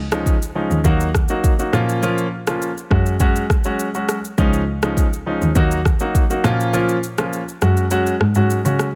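A dark, woody bowed cello opens this hypnotic, mellow afrobeats excerpt at 102 BPM, playing the bass line with vibrato and a soft sul tasto tone, joined at once by a clear, intimate grand piano whose long sustain and audible action noise sit up front. An electronic afro-pop kit of deep kick, rim click and shaker drives the straight 4/4 groove, with the kick dropping out at 6.7 seconds. The chords cycle through Dbadd9, Ebm, Bbm and Gbsus2 in a dry, close-sounding mix.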